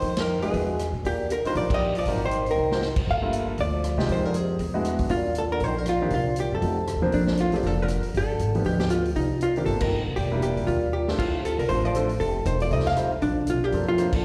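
Playful and warm, this brisk small-group swing and bop excerpt in Bb major at 237 BPM sets a dark, clean hollow-body guitar melody up front over a breathy cup-muted trombone second line with scooped notes, a woody pizzicato upright bass, an intimate grand piano with audible action noise entering at 0.4 seconds, and a vintage drum kit with dark cymbals and a punchy kick, marked by band accents and drum fills at 2.6 and 10.9 seconds, all heard through a live venue's PA with recital hall reverb and slapback echo on the guitar, trombone and piano.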